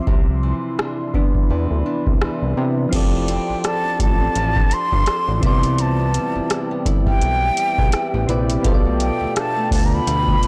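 Contemporary R&B in a sensual, longing mood, where soft, round electric-piano-like synth keys with chorus and tremolo sit over a dark, detuned ambient pad with sidechain pumping, a small fingerpicked nylon-string guitar with tape echo in the background, a fat, detuned analog bass, and a booming, dry analog drum machine with metallic hats and a clipped snare, before a breathy, expressive concert flute with vibrato and tape echo enters up front at 3.3 s, all heard through a blown-out, overdriven recording with light reverb.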